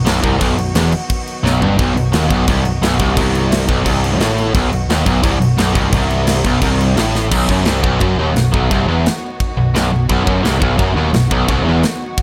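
An up-front, bright, overdriven guitar riff leads this aggressive, dark heavy metal excerpt, backed by two more low guitar riffs in the background (one distorted and compressed, the other double-tracked), a growly, punchy overdriven bass, a tight, polished drum kit with bright cymbals and fills at 1.4 and 7.1 seconds, and a very quiet, smooth bowed string section holding rich sustained chords under light reverb.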